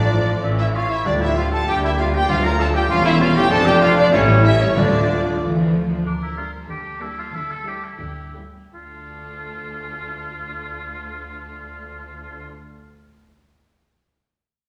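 Bathed in a wet hall reverb, this stormy, restless cut from a quick classical-period symphony movement in D minor moves in 2/4 at 81-99 BPM, with distant vibrato violins carrying the melody over a close second violin line, smooth violas, a warm cello section with portamento and lush double basses, while bright clarinet, hollow flute, mellow horns sustaining chords, vintage-toned trumpet stabs, bassoon and calf-headed timpani fill the opening until about 5.7 s. The music slows from 5.4 s, and a clear, up-front oboe, heard briefly near the start, returns with a second line from 6.1 s.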